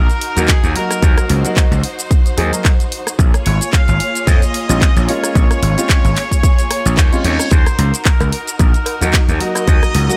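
A dry, close-sounding nu-disco excerpt with a sensual, cosmic mood, built on a punchy electronic kick and a growly, overdriven slap bass up front, with a pop drum kit of handclaps, hi-hat, rim click and shaker, a grand piano with slapback echo entering at 0.4 seconds, lush distant strings pumping under sidechain, a nasal, straight-muted trumpet section carrying the melody through tape echo, a reverse cymbal in the background at 6.8 seconds, and cowbell arriving at 8.2 seconds over chords moving from Ebm to Bbm7 and back.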